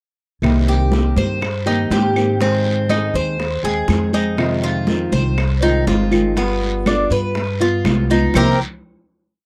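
Cuban son in the guajira style, a short nostalgic and danceable piece that rides a montuno vamp until a final chord at 8.3 seconds, with a bright, metallic tres picking an arpeggiated guajeo up front over a dark, woody pizzicato upright bass playing a tumbao that anticipates the chords, a fingerpicked nylon-string guitar strumming with muted slaps and finger squeak, and background percussion of thick-skinned congas with slaps and open strokes, tight high-tuned bongos in steady eighths with hand bell, claves marking a two-bar time line, and a raspy guiro, set in a dry, close 1970s-style studio sound.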